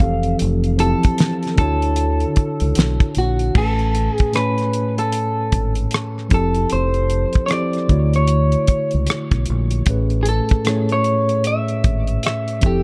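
A full band starts together in this smooth, relaxed neo-soul and R&B excerpt: an electric guitar through a small old amp carries the melody, its slightly broken-up, compressed tone trailed by tape echo. Beneath it a mellow, clean tine electric piano lays down lush ninth chords, moving from Fmaj9 to Dmaj9 and settling on Amaj9 near 3.6 seconds, where a longer second passage begins and repeats the cycle. A deep, round dub bass, fingered and punchy, anchors the low end, while a damped 70s drum kit with a fat snare, tight kick, rim clicks, hi-hat and crash cymbal sets a laid-back, swung sixteenth-note groove. The drums are acoustic and dry, and every part sits up front in a dark, warm mix with light reverb and a small-room feel.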